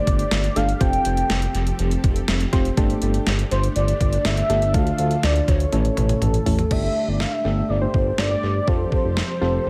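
Synth-pop at 122 BPM with a melancholic, cool mood, cut from a longer piece: a velvety, detuned sawtooth lead carries the melody with vibrato, chorus and dub echo, over a smooth, up-front synth bass and soft, warbling electric-piano-like synth keys that enter at 0.6 s. A vintage string machine playing cellos holds slow-attack chords in the background with ensemble chorus, while a detuned 8-bit digital drum machine, tape-coloured with a thumpy kick and dub echo, plays a fill from 5.7 s. The chords move from Gsus2 through Fadd9 and Dm to A before a new section begins at 6.7 s, all within a lightly reverberant, echo-heavy mix.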